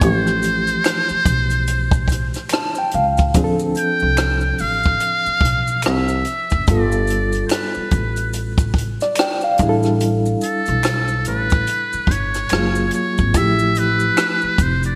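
From the first second, a buzzy, metal-muted trumpet carries an introspective, sultry neo-soul R&B melody up front with vibrato, over a barky, lightly overdriven reed electric piano with fast tremolo, a woody pizzicato upright bass, and a compact cocktail drum kit playing hi-hat, tight kick and rim click through gated reverb. The groove sits at 72 BPM in 4/4 with swung sixteenths in D dorian, moving through chords such as Fmaj9/A, Dm7, G9 and A7sus4, while maracas and finger snaps stay in the background and the electric piano adds a short fill at 2.1 seconds. A lush hall reverb, bright 1980s-style digital sheen and vinyl crackle frame this excerpt cut from a longer piece.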